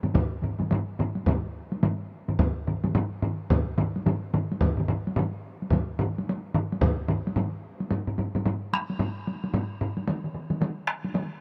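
Hard-stick solo taiko drums sit up front, two of them compressed and saturated and a third sounding in a live room until 7.0 seconds. They drive this powerful, ceremonial fragment of Japanese traditional taiko music, with a heavy-stick taiko ensemble sitting in a small room in the background, a swung sixteenth-note feel in 4/4, light reverb, and a pace that keeps speeding up as the opening section gives way to a new one at 7.9 seconds.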